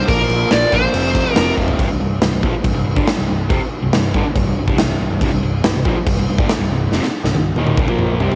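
A smooth, dark overdriven lead guitar opens this menacing, driving hard rock piece in C minor at 140 BPM, playing a brief up-front melody that stops at 1.5 seconds, while a bright, double-tracked cranked stack guitar drives the riff throughout. A growly, punchy picked electric bass and a huge arena drum kit with a punchy kick, bright cymbals and a pumping room sound fill out the straight 4/4 groove, with drum fills at 1.6 seconds and from 6.9 to 8.4 seconds. The home cassette recording is dry, and this cut is taken from a longer piece.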